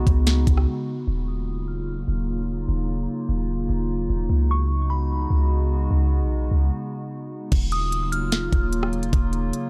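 A warbling, nostalgic tape-like pad holds detuned, chorus-soaked chords through this hazy, ethereal fragment of atmospheric cloud-rap, set over a deep, boomy 808-style bass and joined from 1.3 s by a delicate, tinkling FM bell melody with phaser and delay, while a trap kit with knocking kick, sharp snare and crisp hats sounds briefly at the start and returns at 7.5 s in a dark, half-time mix.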